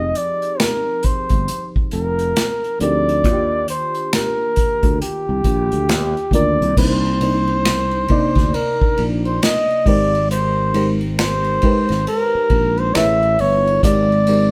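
Sultry and introspective, this slow 68 BPM neo-soul R&B fragment in C minor, with a swung sixteenth-note feel, sets a breathy, up-front flugelhorn playing a jazz-style solo melody with vibrato and scooped notes over a round, warbling vintage FM electric piano with chorus, a growly fretless electric bass and an airy acoustic drum kit played with bundle sticks, with punchy kick, snare, hi-hat, ride, crash and finger snaps entering at 0.2 seconds, all heard as a band playing live in a stone room with moderate reverb, as the chords move from Fm7 through Cm9 to a closing Abmaj9#11.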